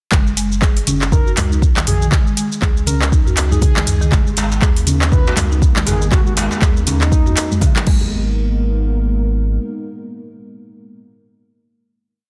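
Spiritual and earthy, this whole piece of afro house rides a deep, up-front four-on-the-floor electronic kick and a swung 16th-note groove. A woody, buzzing marimba with hardwood bars loops a 16-step arpeggio sequence, pumping against the kick alongside a round, tube-saturated analog bass that plays long gliding notes. Programmed afro-pop drums add metallic hats, shaker, claps, low toms and crash, while congas interlock softly in the background. At 1.1 seconds a smooth, mellow synth lead with vibrato, chorus and delay enters with short expressive phrases. Around 4.1 seconds a tight, cracking djembe joins from a distant large room, and a detuned, wave-folded dark pad soon swells in beneath it with sustained, moody chords. After the drop, a final hit lands at 8.1 seconds, leaving the pad and bass ringing out in a dense, heavily limited modern master.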